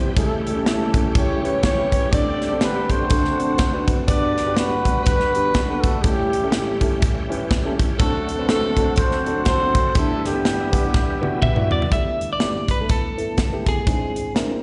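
A dark, woody upright piano and a bright, shouting tonewheel organ open this hopeful, jubilant uptempo gospel cut together, the piano carrying a short slapback echo and audible action noise while the organ's sustained chords churn through a fast rotary speaker with light overdrive and chorus vibrato. At 0.2 seconds a mellow horn section takes the melody, up front with light vibrato and octave doubling, and a punchy, polished acoustic drum kit of hi-hat, kick, snare and toms drives a swung 123 BPM groove in G major. The harmony moves through dominant and suspended colours such as A7/C#, D7sus4 and D7, passing through Gmaj7 before settling on G6. A drum fill from 10.9 seconds leads into a closing passage where a clean, compressed, picked electric guitar briefly carries the melody from 11.4 seconds, resting on G69 and an E7b13/G# chord as the organ and horns fall away. The sound is that of a live gig heard through the venue's PA, dry overall yet touched by recital hall reverb, with the top end rolled off and the fragment cut from a longer piece.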